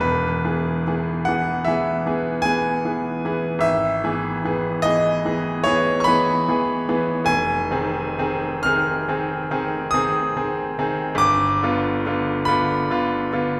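A romantic classical nocturne for solo grand piano in 9/8 with free rubato, this melancholic, mournful excerpt sets a brilliant, up-front piano with long sustain and audible action noise inside a wet recital-hall reverb, its chords moving from E through E/G# and Fm7 to G7.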